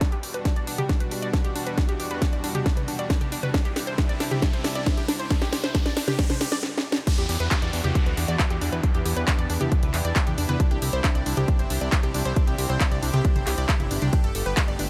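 Emotional and bittersweet, this uplifting trance passage in E minor moves at 136 BPM in a straight 4/4, cut from a longer piece and cycling through Em7 and Cadd9 before touching Gadd9 near its close. A lush supersaw pad holds sustained chords with a slow attack and sub-octave depth, while a round, bright analog pluck spins arpeggios coloured by chorus and tape echo, its tone shaped by a filter sweep during the opening build-up; both breathe with sidechain pumping. Up front, a punchy, overdriven electronic kick is joined by a layered house kit with a cracking snare, hi-hat, ride, crash, handclaps and toms, their tops softened by low-pass filtering and re-recorded in a large room, and a drum fill runs through the build while a riser and downlifter sit in the background. The music halts briefly at 6.6 seconds before the drop lands at 7.1 seconds. A fat, detuned sawtooth bass enters at 7.2 seconds, thickened by tube saturation and pumping with the groove, as light reverb places the mix in a gentle space.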